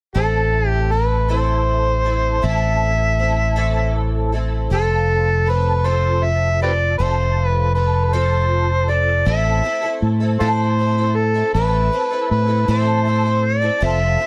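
A slow 6/8 pulse carries this nostalgic, open-road stretch of folk and heartland rock, cut from a longer piece. A picked twelve-string acoustic guitar enters at 0.1 seconds with a bright, shimmering, octave-doubled accompaniment, its fresh strings, boxy archtop body and faint finger squeak treated with an ensemble chorus and sitting back in the mix. An overdriven harmonica carries the melody up front with a gritty, amplified tone, light vibrato and tongue slaps that give it a pop-style solo voice. A fingered electric bass anchors the low end with a round, punchy sound that is direct and amped. The harmony settles from A minor to F before returning to A minor at 9.3 seconds as a new section begins, all under a light reverb.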